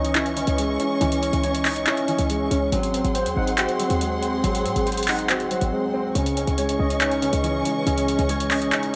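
A booming, tape-warm analog drum machine with metallic hi-hats and handclaps opens this eerie, melancholic half-time trap excerpt at 140 BPM in C# harmonic minor, joined from the start by a punchy, tight 808-style bass, chorused and delayed tine electric piano arpeggios, a dark, mellow concert grand piano and lush, vibrato-rich bowed strings holding sustained chords over C#madd9 and G#7, with a brief break at 5.7 seconds before the figure returns at 6.2 seconds in light digital ambience.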